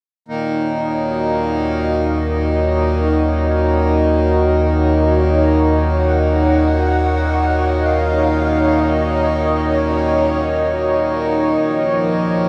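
A smooth, chorused analog pad holds sustained Eb minor chords at an unhurried 64 BPM in 3/4 alongside a round, deep sub bass and a reedy, nasal hand-pumped harmonium drone, while a breathy, flute-like synth lead with vibrato fades in from the background at 1.2 seconds. It all adds up to a serene, reflective ambient excerpt washed in a vast, echoing reverb, with the harmony shifting to a Dbadd9/Eb chord at 11.6 seconds.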